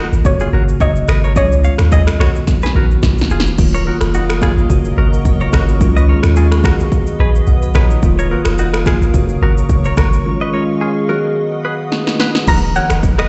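Heard through a big sound system in a bare stone room, this dark-topped, reverberant excerpt of smooth, hypnotic afrobeats moves at 108 BPM in Eb minor with a lightly swung 16th-note feel. An up-front, overdriven deep house kit of deep kick, punchy snare, rim clicks, finger snaps, shaker and crash pairs with a boomy, sine-like 808 bass, while a bell-like tine electric piano, a twangy, direct-recorded guitar riff with digital delay, and a soft, round pluck melody with chorus and delay fill out the Gb, Dbadd9, B and Ebmadd9 changes. A glassy, warbling FM pad drifts in at 3.9 seconds; the piano adds a fill, the drums add fills at 2.5 seconds and at 11.9 seconds, the latter closing a break that begins at 10.3 seconds, and the pluck melody returns at 12.5 seconds.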